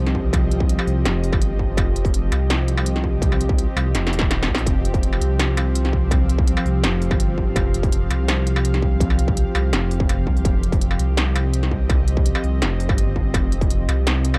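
A dark, detuned saw bass rumbles deep and up front through this tense, spacious half-time drum and bass excerpt at 166 BPM, under a string-like bowed drone with vibrato, built-in reverb and sidechain pumping, a distorted electronic kick, and an industrial kit of clanging snare, smooth hats and struck metal that breaks into a fill at 3.9 seconds, all in a dry, gritty cassette-tape recording.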